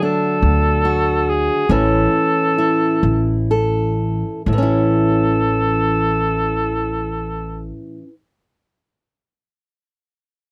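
A straight 6/8 sway carries this tender, nostalgic acoustic folk-pop ballad fragment, which slows over its first 4.5 seconds as a mellow, distant cor anglais sings a classical-style solo with light vibrato over fingerpicked steel-string acoustic guitar and a woody, growly pizzicato upright bass entering at 0.4 s, the harmony moving from D to A in a dry, close 1970s-style studio sound.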